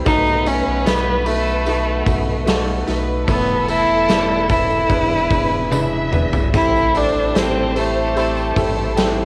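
A solo violin carries the melancholic, longing melody with smooth, even vibrato, up front yet slightly distant, in this pop ballad fragment cut from a longer piece that moves through B7, Esus4, E7 and Am7. A clear, woody upright piano and a very quiet, clean electric guitar playing arpeggios sit over a deep sine-and-triangle sub bass, while a lush violin section with portamento adds a second line in the background and a big-room acoustic drum kit with a punchy kick plays a fill from 5.7 to 6.5 seconds, backed by a jingly, close and dry tambourine low in the mix. At 6.5 seconds a soft, floating string section enters with sul tasto chords, and the piano, violin section, drums and strings all carry the cassette-tape colour of this home recording made in a booth with moderate ambience.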